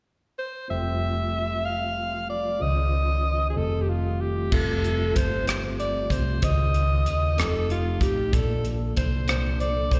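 Slow gospel in 6/8 at 63 BPM, jubilant and hopeful, this excerpt from a longer live performance in F major is heard through a venue's PA with recital-hall reverb and a small-room feel. A clear, forceful alto saxophone carries the melody up front with vibrato and slapback echo from 0.4 seconds, while a round, dark hollow-body electric bass, a background tine electric piano with its own slapback echo, and a soft, flute-like tonewheel organ with key click, chorus vibrato and fast rotary speaker enter at 0.7 seconds over Fmaj9, Dbmaj9 and F9 chords. At 4.5 seconds a crisp, airy fusion drum kit with a punchy kick, hi-hat, rim click and crash cymbal joins, and the harmony finally reaches Bbmaj7.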